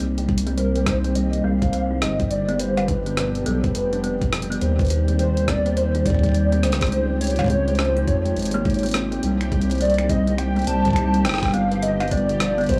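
A buzzing, woody kalimba plays filtered arpeggios with tape echo from the start, over a deep, rumbling detuned saw bass held up front and a gritty, pitched-up jungle sampler-style kit of cowbell, finger snaps, hi-hat and rim click, joined at 0.3 s by a thumpy compressed kick and a bubbling, resonant stepped-filter texture in the background. This glitchy, intricate IDM excerpt moves at 104 BPM with a 16th-note swing, as a lo-fi, warbling pad and a vintage nostalgic lead with vibrato and analog delay enter by 0.7 s over chords cycling from Cm7 through G7, Ebmaj7 and Dbmaj7. The sound is dry and gritty, set in a small room with light digital ambience.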